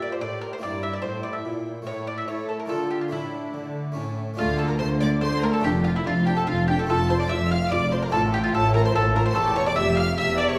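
In a straight 3/4 at 145 BPM, this dramatic, driving baroque-style concerto movement in D minor puts a mellow, picked bowl-back mandolin up front on the melody, with a rich, focused chamber violin section carrying the melody higher, a lush studio violin section on the second line in the background, a dark viola section and a round, French-style harpsichord accompanying, a distant cello section on the bass, and a clear, intense double bass section joining at 4.4 s, the bowed sections singing with vibrato inside a wet recital-hall reverb heard from further back in the room.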